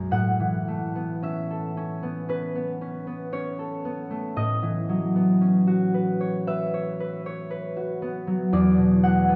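A dark, reverberant church ambience surrounds this brief, mysterious and wistful classical excerpt, where a solo concert harp, ringing and thumb-plucked close up front, drifts in rubato at around 49-60 BPM through Aadd9, C#m11/A and E9 harmonies spanning B1 to F#5 before being cut off at 9.4 seconds.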